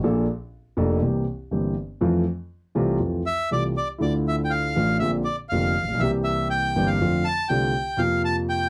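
A dry, close 1970s-style studio sound with light reverb frames this sultry, passionate tango fragment, taken from a longer piece and moving at 121 BPM in 4/4 with a rubato feel. A dark, mellow concert grand piano with a deep bass plays the accompaniment up front, alone at first in F major over chords such as Bbmaj7, C7 and Fmaj7. A reedy, dark, airy bandoneon enters with the melody at 3.3 seconds, also up front, just before the music turns to D minor at 4.0 seconds and passes through Dmadd9, Bbadd9 and C7 to settle on F6 and Bbsus2/F.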